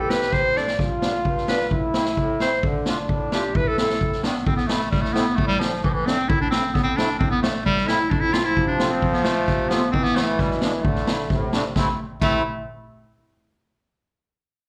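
A bright clarinet with vibrato leads this bittersweet, soulful klezmer excerpt in jazz-flavoured solo lines touched by slapback echo, while a warm, close-miked trombone with a soft attack plays a classical-style second line that drops out at 4.2 seconds and returns at 8.1 seconds, a reedy, sweet accordion with light tremolo tuning and slapback echo supplies the accompaniment, and an acoustic street-band drum kit with a boomy kick, dark cymbals and a fill at 0.6 seconds keeps the 2/4 pulse, the whole live gig carried through the venue's PA into a club reverb.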